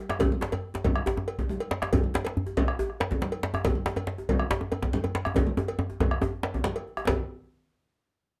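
A straight 4/4 pulse at 140 BPM drives this short, earthy and powerful passage of West African traditional drumming, cut from a longer piece. A deep, saturated bombo sits up front, compressed and anchoring the bottom of the ensemble. Beside it, a close, dry djembe played with soft hands gives a warm, deep voice, while a second djembe struck with hard hands cracks tightly in the background, its metal rattles buzzing through a small room. Ringing, medium-tuned congas with a vintage, band-limited color and a metallic, dry cowbell complete the group. The bombo and djembes enter at 0.1 seconds, the congas and cowbell follow at 0.2 seconds, and all play until 7.3 seconds. Drum fills open the passage and return from 5.4 to 7.1 seconds, and a modest small-room reverb wraps the whole ensemble in a dark, warm production.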